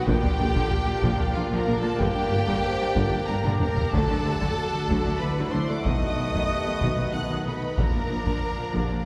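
Opening at once on a lush violin melody over a second violin line, with mellow French horns and a shimmering pipe organ celeste holding sustained chords, this triumphant, heroic cinematic film-score excerpt in 3/4 at 93 BPM quickly fills out with a rich viola section, distant roomy trombones, and a very quiet bass of tuba, cellos and double basses under a heavy-sticked taiko ensemble, which plays a fill at 3.4 seconds before a barely audible, round timpani enters at 3.9 seconds, all as the harmony moves from Bb through Gm, D and B back to Bb in a reverberant concert hall heard from further back.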